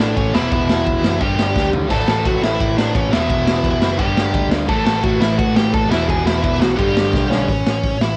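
Driving straight 4/4 at 172 BPM, this rowdy, energetic punk rock excerpt in A mixolydian pairs a gritty, saturated garage drum kit with a punchy kick and a pumping small-room sound, with fills at 1.6 and 7.1 seconds, against a bright, double-tracked riffing guitar that drops out at 7.5 seconds, a growly picked bass and a dark, smooth overdriven lead guitar melody, over chords cycling E5, G5 and A in a dry home cassette recording.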